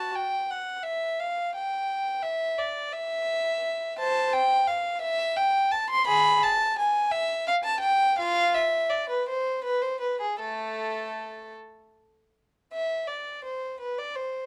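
Set in a dark production with light reverb, this brief fragment of a flowing, dance-like baroque-style suite movement features one up-front solo violin with an airy, nasal gut-string tone, playing in period style in a rubato 6/8 at 51-59 dotted-quarter beats per minute, settling into A minor from 4.0 s, ranging from A3 to C6, and moving into a new section at 12.7 s.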